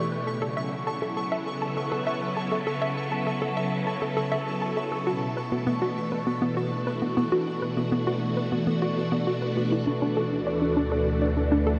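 This mysterious, cosmic fragment of sequencer-driven space music opens at 100 BPM with a swirling, vintage phased string machine holding up-front sustained chords over a faint, bright pulsing gated texture. At 0.3 seconds a hollow, bouncy square pluck riff joins, carrying tape echo and shimmer reverb, as the chords move from A to B minor while a filter sweep shapes the arpeggiated synth sound until 9.9 seconds, when the gated texture stops and the harmony settles on Dadd9. A mellow, evolving analog drone enters on a low D at 10.5 seconds, and the dark production is bathed in a huge, wet ambient reverb.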